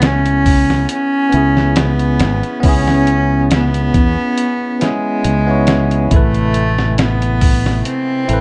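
Trip hop with a smoky, brooding mood and a gentle swing, this short fragment puts a bowed, reedy cello with a rich gut-string tone up front, its melody trailing dub echo. Around it, a bright, bell-like tine electric piano plays through tremolo, a fingered electric bass adds tube-saturated weight, and a gritty, compressed sampler-style kit with a thumpy kick and a tape-warm sound in a large room carries the beat. The harmony moves from C#m7 to Amadd9 at 6.1 seconds, with light reverb and a softened top end.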